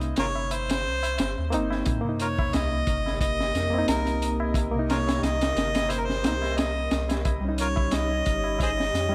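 This smoky, dark trip hop excerpt opens on a barky, reedy electric piano under a filter sweep, its tremolo, sampler grit and tape echo sitting over a round, deep dub sub bass with tube saturation. A crunchy, gritty breakbeat kit with a tight kick and high-tuned snare sets a swung groove, while a high-tuned tabla rings in the background. Almost at once a harmonica takes the solo up front in a jazz style, with light vibrato, tongue slaps, scooped notes and dub echo. At 1.9 seconds an impact and a very quiet electronic sub drop mark the shift into the second section, and at 2.7 seconds a moody, detuned analog pad enters behind the others with chorus and sampler grit. The harmony rests on Cm7 before moving to Eb7 at 7.2 seconds, all within light, small-room ambience.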